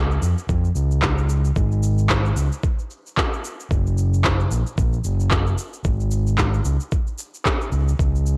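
A swung sixteenth-note groove at 112 BPM in 4/4 carries this wistful sunset chillout clip, with layered, overdriven electronic shaker and handclaps up front from 0.1 s and a gritty, thumpy sampler-style kick joining at 0.5 s. Beneath them, a punchy, amped fingered electric bass, present from the very first moment, sits forward in the mix between F#1 and E#2, its overdrive adding bite to its warm tone. Light reverb and the worn, warbly pitch drift of old cassette tape color the recording.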